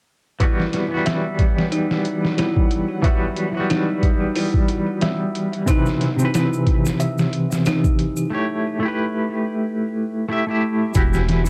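A cassette-worn home recording in a booth carries this brooding, dark trip hop excerpt at 91 BPM in E harmonic minor, with a lightly swung 16th-note feel and chords moving from Emadd9 through Cmaj7 and A7. Up front, a bright, clean semi-hollow electric guitar with tremolo and tape echo sits beside a compressed, pitched-down sampler-style drum kit with a thumpy kick, while a delicate, slightly out-of-tune music box tinkles arpeggios through 12-bit grit and a filter sweep, over a very quiet, tense, nasal bowed-like drone. An egg shaker joins at 5.7 seconds, the music box and drone drop out for a break at 8.3 seconds, and a deep, rumbling detuned saw bass arrives on E1 at 11.0 seconds.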